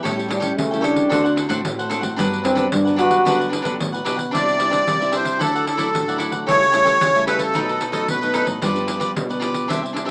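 A jingly, compressed pandeiro sets a straight 4/4 samba and choro pulse at 112 BPM, under a lively, joyful excerpt cut from a longer piece in G major. A crisp, bright cavaquinho plays picked accompaniment, and a fingerpicked nylon-string guitar with fresh strings adds small chords in the background. A second nylon-string guitar, dark and thumb-plucked in classical style, carries the bass. A breathy trombone leads in front with a mellow, whispered jazz-style solo, with light vibrato and a soft attack that sounds distant and roomy yet intimate, over A7, D7 and Gmaj7 until 3.5 seconds. At 4.3 seconds a sweet, reedy accordion takes the melody up front, its light tremolo tuning shimmering over Cadd9, Dadd9, A7/C# and B7, before the harmony moves to G7. The whole has a rough home-demo character with a small-speaker sound and moderate studio ambience.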